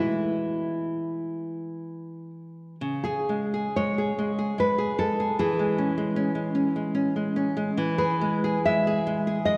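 Romantic guitar duo in C# minor at a rubato 60-78 BPM in 3/4, tuned to A4 = 441 Hz, this lyrical, tender passage cut from a longer piece pairs a full-bodied, deep fingerpicked nylon-string guitar carrying the melody with a smaller-sounding fingerpicked nylon-string guitar accompaniment, both up front, moving through E, C#5 and C#m/E harmonies with a new section arriving at 2.8 s, all bathed in a wet concert-hall reverb within a dark production.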